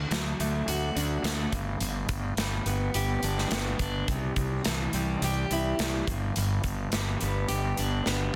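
Bittersweet and restless, this short slice of quiet-loud alternative rock in straight 4/4 moves through D, G, C and back to G. A full-bodied dreadnought acoustic guitar picks arpeggios with audible finger squeak, while a growly, fuzz-driven fingered bass sits up front and a punchy big-room rock kit of kick, medium-tuned snare and hi-hat drives underneath. Light reverb surrounds the dense, heavily limited mix, and a drum fill arrives at 8.1 seconds just before the cut.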